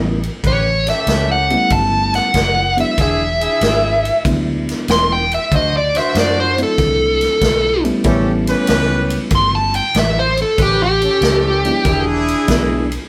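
A swung shuffle at 95 BPM in 4/4 drives this gritty, rollicking electric blues in A mixolydian, cut from a longer piece. The big-band drum kit swings with a punchy kick, a medium-tuned snare and ride cymbal, sounding natural and roomy, while the vintage fingered bass sits low with a round, foam-muted, amped tone. A reedy electric piano, lightly overdriven through its built-in speakers, fills in the accompaniment, and a bright, close-miked horn section adds jazz-style stabs from 0.4 seconds. Out front, a dark, smooth overdriven lead guitar carries the solo melody, picked and prominent, until 12.0 seconds. The chords move from A7 to E7, D7 and back to A7 before landing on E7, and the whole band plays live together in a stone room with moderate reverb.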